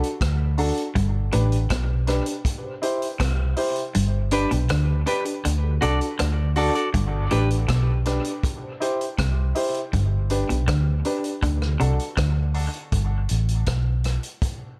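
Dark, boxy grand piano stabs with dub echo open this laid-back, spacious dub reggae excerpt over a vintage drum kit of punchy kick, hi-hat and rim click, joined by a round, foam-muted bass sitting up front and a twangy, slightly broken-up electric guitar riff with echo, while a clean picked electric guitar adds echoed accompaniment from 4.3 to 7.5 seconds, the kick drops out from 3.9 to 6.9 seconds, and a filter sweeps the piano from 9.9 seconds, with light reverb giving the studio a gentle sense of space.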